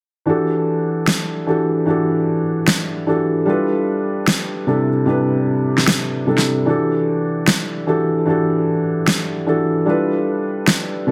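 A felt-muted upright piano opens this lush, emotional future bass fragment at 0.3 s, its mellow, boxy chords sitting up front with a tape echo as the harmony moves through rich extended chords like Em11, G13 and Cmaj9. At 1.1 s a huge, layered electronic snare drum arrives, overdriven and equally forward, driving a half-time feel. A small room ambience and moderate reverb surround the pair, and the dense, heavily limited master keeps the sound full and modern.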